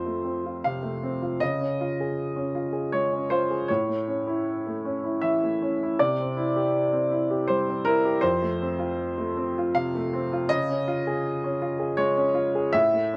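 A solo baby grand piano, open-toned and up front with long sustain, carries this hopeful, intimate neoclassical minimalist excerpt in a rubato 3/4, ranging from F2 to F5 and moving through F, Db, A and C chords within a small room's moderate reverb.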